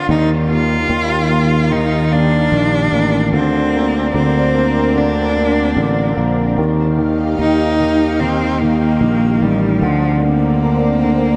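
A clear, focused bowed cello with vibrato carries the tender, emotional melody up front in this slow pop piece at 74 BPM, drifting between Ebadd9 and Bbadd9/D chords. A warm baby grand piano with long sustain plays the accompaniment, a growly, amped fretless electric bass holds the low end from 0.1 seconds, and a lush, detuned sawtooth-and-square unison pad with slow attack, chorus and phaser sustains the chords. A huge ambient reverb soaks the mix in a dreamy haze across this short passage cut from a longer piece.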